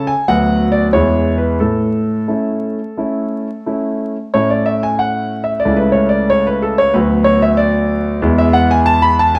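Flexible rubato phrasing in 4/4 shapes this elegant, playful classical-period piano sonatina, cut from a longer piece, as a solo concert grand moves from an opening phrase into a contrasting second idea at 4.3 s. The piano sits up front with a clear, natural tone, deep bass and long sustain, circling through Bm/D, E and A harmonies. Close, detailed miking meets the wet bloom of a recital hall, with vinyl crackle underneath.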